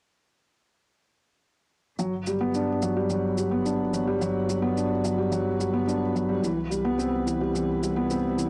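At 2.0 seconds a felt-muted upright piano, a string quartet, a bowed double bass section and a shaker all come in together in this tender, hopeful piece of piano and strings electronica, cut from a longer work and running at 108 BPM in 4/4 with a straight feel in G major. Up front, the piano plays a soft, mellow riff in a low-middle register, intimate and vintage in tone, with audible action noise and tape echo on its cassette-tinged sound. Far behind it, the string quartet holds sustained chords with rich vibrato, soft attacks and expressive portamento, one player per line, its chamber sound distant and coloured by cassette tape. Beneath them the double bass section bows a deep, reedy line with a gut-string, period-style tone, light vibrato and tube saturation, while an electronic, layered shaker adds an overdriven, cassette-roughened pulse. The harmony rests on Gmaj7 before moving to Cmaj7 at 6.4 seconds, and the whole passage carries light reverb and the homespun character of a cassette recording until it ends at 8.5 seconds.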